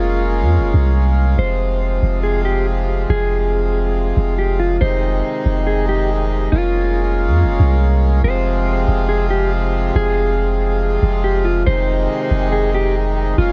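A deep, sine-like 808-style bass with a fast attack and long decay sits up front in this hazy, melancholic excerpt of atmospheric cloud-rap at 140 BPM in a half-time 4/4 feel in F minor, beneath a reedy, breathing harmonium holding sustained chords and a dark, clean fingered electric guitar melody softened by a low-pass filter and tape echo, all moving through Bbm7/F, Fm and Ab/F across 13.5 seconds.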